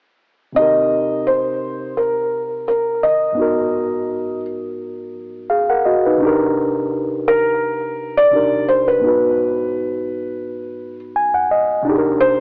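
A reedy electric piano opens this hazy, nostalgic swung hip hop excerpt with low-passed Cm7 and Abm7 chords, joined at 0.6 s by a dark, felt-muted upright piano carrying an intimate melody with audible action noise, both parts sitting up front with the electric piano heard through built-in speakers and adding a fill at 10.8 s, all bathed in plate reverb and worn, warbling cassette tape that gives the sound an AM radio cast.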